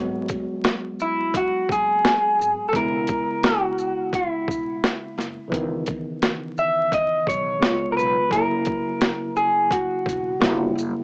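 Nostalgic and reflective, this lo-fi hip hop clip moves at 86 BPM in C# dorian with a gently swung feel, its chords drifting from G#m7 through C#m9 and F#7. A worn, slightly out-of-tune tine electric piano, lightly overdriven and softened by cassette tape, carries the accompaniment over a woody pizzicato upright bass tucked in the background, while a gritty, pitched-down boom bap sampler-style kit with a thumpy kick, high-tuned snare, hi-hat and shaker sits up front. From 1.0 s a slightly broken-up electric guitar through a small old amp picks out the melody, dulled by a low-pass filter and trailed by tape echo, and the mix rests in a small wet room with vinyl crackle and the sound of a small speaker.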